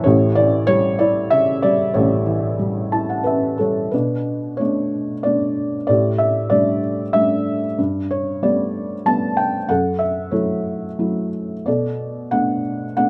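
A moderate studio ambience surrounds a felt-muted upright piano placed up front, its dark, intimate tone shaped by thick felt and short sustain. This brooding classical solo, cut from a longer piece, moves freely in rubato triple time across a range from A1 to A5. A felt piano fill runs from 2.6 to 3.9 seconds and leads into a new section at 3.9 seconds, where the harmony passes through Bm7, A7sus4, Gadd9 and F#m7 before settling back on Bm7.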